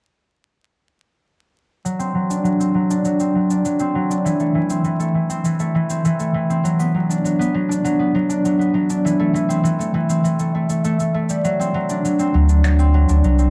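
A straight 4/4 pulse of cabasa and finger snaps, natural and brushy in a small room, carries this warm, delicate folktronica fragment cut from a longer piece, as an up-front, fingerpicked concert harp rings out arpeggios through a low-pass filter sweep, delay and plate reverb over chords moving from D7 through C6, Bm/F# and Am back to D7, until a deep, round sine sub bass with tube saturation arrives at 12.3 seconds, all set in a dark, wet little room dusted with vinyl crackle.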